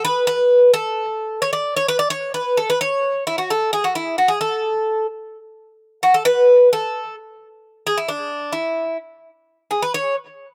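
Greek folk in A major, this short cut from a longer piece is uplifting and energetic, moving at 131 BPM in a straight 2/4. A solo acoustic Greek bouzouki carries the whole recording from 0.0 to 10.2 seconds, picked and placed up front. Its double strings give a bright, metallic ring, and some octave-doubled courses add shimmer to the line as it moves between D4 and D5. The instrument is tuned slightly under standard pitch, with A4 at 439 Hz. Recorded outdoors with little reverb, the sound is dry, and the tune shifts into a second section at 5.6 seconds.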